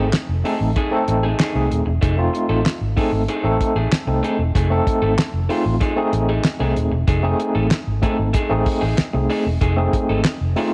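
A moderate echo chamber reverb surrounds this energetic funk excerpt at 95 BPM in F mixolydian, built on a single F7#9 chord. Up front, a damped 70s drum kit with a fat snare, tight kick, hi-hat and handclaps sits beside a dark, round, foam-muted fingered electric bass, while a barky, gritty overdriven tine electric piano plays stabs with fast tremolo through a combo amp. Lower in the mix, an electric guitar through a small old amp adds slightly broken-up, lo-fi picked accompaniment.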